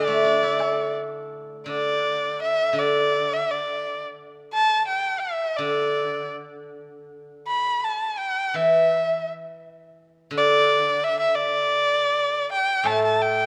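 The recording sits in a moderate concert hall reverb that lends the close instruments a gentle halo. This festive, graceful short excerpt of Chinese traditional chamber music moves at 83 BPM in 2/4 with a rubato feel, in the D zhi mode, tuned to A4 = 437 Hz. Up front, a single bowed erhu carries the melody high in its register, its focused, slightly boxy tone colored by vibrato and portamento. Alongside it, a steel-string zither played with fingerpicks supplies a ringing, silvery accompaniment across a lower span. A very quiet woodblock adds close, dry taps around 0.6 seconds and again near 12.9 seconds, framing the passage before it ends at 13.5 seconds.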